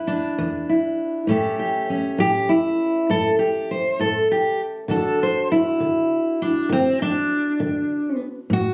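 A fingerpicked steel-string dreadnought guitar carries this laid-back, gritty acoustic country blues excerpt, its fresh strings sounding warm up front with audible finger squeak. Played at 66 BPM in a 12/8 metre with a straight feel in A mixolydian, the guitar moves from an E5 opening to an A7 at 1.3 seconds, where its solo begins, then shifts to D at 4.9 seconds. The phone recording catches the room's club reverb, giving the close tone a casual live air.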